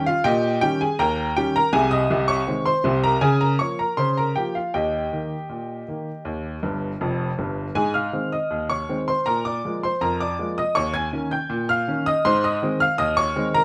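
Lively and cheerful, this short cut from a longer ragtime piece features a solo upright piano with a woody, intimate tone, audible action noise and long sustain. The piano sits up front in a studio reverb, heard from further back in the room. It moves through a dominant-seventh-driven progression that resolves home to Ab, with a brief piano fill from 6.6 to 7.8 seconds.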